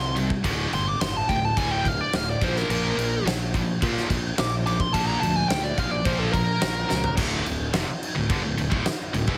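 Heavy and driving, this short hard rock excerpt in straight 4/4 opens with a smooth, dark overdriven lead guitar carrying a picked solo melody up front from the start until about 7.1 seconds. Beneath it, a scooped, high-gain guitar, double-tracked and distorted, plays a bright picked riff, while a fuzz-soaked fingered electric bass adds a growly, punchy low end. A huge arena drum kit joins at 0.2 seconds with a fat snare, punchy kick, bright cymbals and toms, its natural big-room sound sitting up front. A drum fill at 6.9 seconds leads into a new section at 7.2 seconds, where the band settles on D minor after the lead drops out. The mix is dry and heavily compressed, giving it a radio-ready punch before it cuts off at 9.4 seconds.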